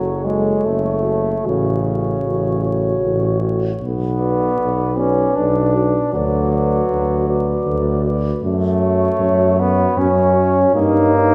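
Classical, hymn-like brass band music in a rubato 3/4 at 77 BPM, elegiac and yearning, with a dark cornet singing the melody with vibrato over a mellow French horn section's background second line, a clear, up-front trombone and a very quiet, soft-edged euphonium in accompaniment, and a warm tuba bass, all heard from further back in a wet recital hall with vinyl crackle, through chords moving from F#m to Bm and closing on D#7/G at 10.8 seconds in this fragment cut from a longer piece.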